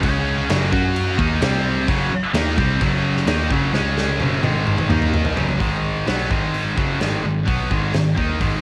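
Two scooped, high-gain electric guitars open this anthemic, powerful hard rock fragment with a bright, distorted picked riff, one up front and one in the background, both with a cassette-tape grain, over a worn, slightly out-of-tune tine electric piano playing the bass line through a combo amp and a huge, natural arena drum kit with a punchy kick and medium-tuned snare that plays a fill from 3.7 to 5.6 seconds, all set in a light small-room reverb with the feel of a home cassette recording.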